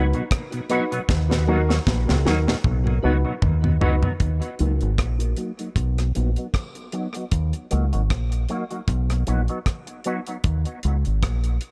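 This spacious, heavy dub reggae piece in Eb minor opens with a clean, twangy guitar through an envelope filter, chorus, low-pass filter and tape echo, alongside a very quiet tonewheel organ with key click and slow rotary vibrato, and boxy, woody upright piano stabs run through a low-pass filter and tape echo. Beneath them sit a round, punchy fingered bass and a dry acoustic drum kit with a high-tuned snare and tight kick, both up front, moving at 77 BPM with a light 16th-note swing; a drum fill leads into a break at 4.2 seconds marked by a filter sweep, after the organ has dropped out. The chords alternate between B and Ebm before landing on Eb5 as the guitar stops at 10.4 seconds, all within an echo-heavy mix carrying a faint mains hum.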